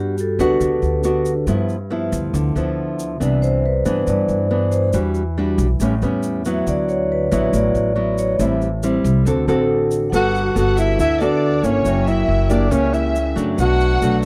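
Bossa nova at 139 BPM in 4/4 with a straight feel, this sunny, romantic excerpt is cut from a longer piece and opens in D major before moving to G major at 10.1 seconds. A fingerpicked nylon-string guitar sits up front, joined by the pizzicato upright bass, whose gut strings give a woody, thumpy tone, while a grainy tube shaker adds bright texture from 0.2 seconds. For the first stretch the vibraphone, struck with medium hard mallets and motor off, takes a metallic, ringing solo over chords such as Gmaj7, Cmaj9, Em9 and A9. At the change, a breathy tenor saxophone enters at 10.2 seconds with a mellow, whispered subtone, vibrato and scooped notes, carried by tape echo, while a lush bowed violin section adds a smooth second line above it over Gmaj9, F#7b9 and Bm7. The sound is that of a dry, close 1970s-style studio with light reverb, warm and intimate.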